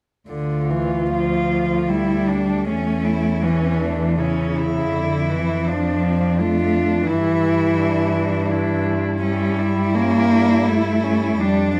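Classical and elegiac, this excerpt for a cello ensemble moves in a rubato 3/4 at roughly 73-90 BPM in D minor, its harmony passing from Dm through A/E and Em7/G to A7/G. Four bowed cellos, each a single player, sing with vibrato: a warm, expressive accompaniment sits close and up front with soft attacks and portamento, a soft-edged bass adds its own gliding portamento from further back, and a dark, woody second line sounds above them. At 1.1 s a clear, smooth and even melody enters from a distance, all held in the moderate reverb of a recital hall.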